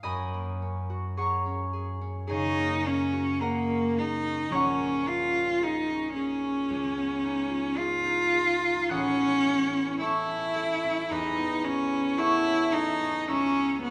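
Impressionist classical music for cello and harp, luminous and dreamy, moves with a flexible rubato feel through lush add9 and seventh harmonies in this passage cut from a longer piece. The concert harp opens alone, its warm fingerpicked notes ringing across a low-to-high span, until the solo cello enters at 2.3 seconds with a clear, smooth, even bowed melody colored by vibrato. Both instruments sit up front, with the cello a touch more prominent, inside a moderate concert hall reverb that lends a soft halo to the sound.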